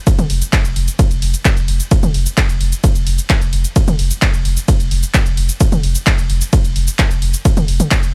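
Driving peak-time techno at 130 BPM with a hypnotic pull, built on an up-front, layered electronic kick drum with a small-room punch, a tape-warm analog drum machine supplying handclaps, hi-hat, ride cymbal, shaker and toms that pump under sidechain, and a deep, round sine sub bass sitting on F1, overdriven and low-pass filtered, its sustained tone pumping with sidechain in a dry mix.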